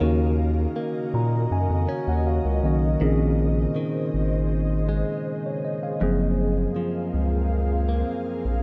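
A straight 4/4 groove at 80 BPM sets a slow, late-night R&B mood in Bb minor, full of longing across this 8.6-second fragment cut from a longer piece. A round, deep analog bass sits up front with a dark, sustained tone, while a mellow tine electric piano carries the accompaniment and adds a fill between 0.8 and 3.0 seconds. Underneath, an ethereal, airy pad holds slow-blooming chords through ensemble chorus and its own reverb, and a bright, clean electric guitar recorded direct picks compressed arpeggios through delay. The harmony moves from Ebm7 to Bbm11 at 3.0 seconds and settles on Gbmaj9#11 at 6.0 seconds. The whole thing has the rough feel of a home demo, set in light reverb.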